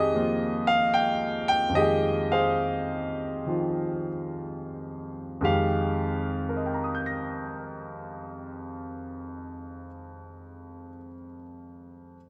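This is a solo jazz piece in F minor, moody and swinging, moving in 4/4 at a slow, elastic tempo between 57 and 79 BPM with a lilting swing on the eighth notes. A single grand piano carries the whole excerpt from 0.0 to 12.2 s, opening on an Fm9 chord and ranging from F2 up to Bb6. The tempo slows over the first 5.4 s before the music moves into a new section that runs to 9.7 s. The piano's tone is warm and natural, sitting up front in the sound. Close, detailed microphones and a light reverb give the performance an intimate, clear presence.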